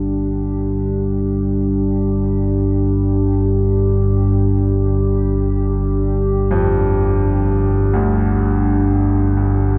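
Unsettling and dark, this free-time dark ambient drone excerpt sets a deep, rumbling, ominous drone with built-in reverb and lush chorus beneath a moody, detuned, wave-folded analog pad holding sustained chords with subtle chorus and a polished grand piano playing low arpeggios through delay, all three sounding throughout the 9.8 seconds in a vast, echoing cathedral reverb.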